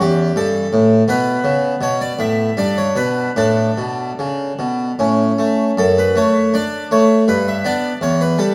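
Classical baroque-style suite movement for solo harpsichord in a flowing, dance-like 3/4 at 72-84 BPM with rubato, its plucked, full French-style tone on two sets of strings sitting up front in a moderate recital hall reverb, spanning E2 to E5 as the harmony moves from A through Aadd9, G and Asus4 before shifting at 5.8 seconds to D/F#, G and Em in this brief fragment of a longer piece.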